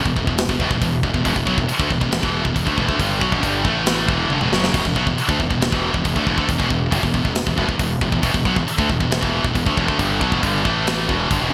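Heavy metal with an epic, aggressive mood, this short excerpt drives in a straight 4/4 on a riff shared by two high-gain electric guitars, one heavy and bright, the other scooped and pushed up front, both distorted and picked in the low register. Beneath them a fuzz-laden fingered electric bass growls with overdrive, its tone both direct and amped. A tight metal drum kit enters at 0.1 seconds with hi-hat, kick, snare, splash cymbal and toms, its medium-tuned snare, tight kick and bright cymbals set in a big room with gated reverb. The harmony sits mostly on E minor, shifting briefly to an A power chord around 3.7 seconds and again near the close, and a drum fill punctuates the passage at 4.3 seconds. The whole is framed in a bright 1980s-style digital production with light reverb.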